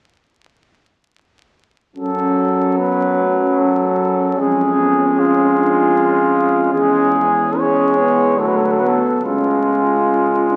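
Through the crackle of a very old 78 rpm record, a classical brass band enters together at 2.0 seconds with a solemn, elegiac hymn-like passage in triple metre, played with a flexible rubato. A warm, close-miked cornet sings the melody up front, while a mellow French horn section with light vibrato supplies a second line in the background. A brilliant but distant, roomy trombone stands forward in the accompaniment, joined by a very quiet, dark euphonium that is punchy with a smooth top. Beneath them, a mellow tuba with light vibrato anchors the bass. The harmony moves from F#m through C#/E# and C#m/E to D and C#, all bathed in a wet church reverb, before the passage is cut off at 10.6 seconds as part of a longer piece.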